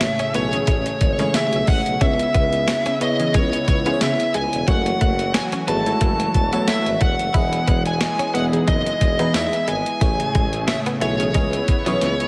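A lush hall reverb gives this dramatic, moody 1980s-style pop cut a big arena sound, with a thumpy, tape-tinged digital drum machine (kick, snare, hi-hat and tambourine) up front at 90 BPM in C# minor and a lightly swung 16th-note feel, closing with a drum fill at 12.0 seconds. A bright, overdriven lead guitar carries the melody over a roomy, distant tuba bass with scooped notes, while a glassy, bell-like FM electric piano with chorus, phaser and slapback echo, a vintage warbling analog pad and a punchy sawtooth polysynth comp entering with stabs at 0.5 seconds sit in the background. A very quiet, direct-recorded clean electric guitar picks a compressed riff beneath, as the chords move from Amaj7 through C#m7, F#m7 and Emaj7.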